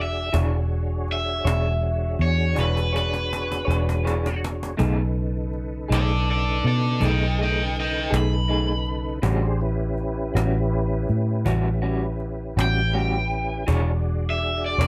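Set in a lazy 12/8 at 54 dotted-quarter beats per minute, this slow blues has a laid-back yet rollicking swagger, and it is cut from a longer piece. A raw garage guitar carries the melody up front, its bright, overdriven picked tone sitting in a plate reverb, while a tonewheel organ holds sustained chords with key click, chorus vibrato and a slow rotary speaker giving its clean tone a gentle shimmer. Underneath, a vintage muted fingered electric bass sits dark, round and punchy near the front of the mix. From 0.3 seconds an electric guitar through a small old amp adds slightly broken-up, lo-fi accompaniment with tremolo, entering together with a woody, compressed cajon with faint snares that plays a fill between 2.6 and 4.8 seconds. The chords move from E13 to B13 and A13 before returning to E13, all within a light room reverb.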